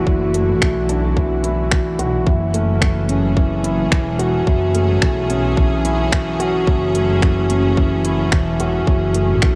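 Piano and strings electronica with a melancholic, intimate mood, this short cut from a longer piece moves from Dadd9 to F#m7 in a straight four-beat feel. A felt-muted upright piano sits up front playing a mellow riff, its soft tone carrying audible action noise and trailing into digital delay and shimmer reverb. Behind it, a distant symphonic string section holds sustained chords with a biting, intense edge and light vibrato, also bathed in shimmer reverb. Beneath them, a lush bowed double bass section anchors the low end with smooth vibrato and a sidechain pumping effect. A tight, overdriven electronic kick drum sits up front, joined from 0.3 seconds by an electronic kit of finger snaps and crisp hi-hat, both re-recorded in a small room. The whole mix sits in an echo chamber reverb with a dark production.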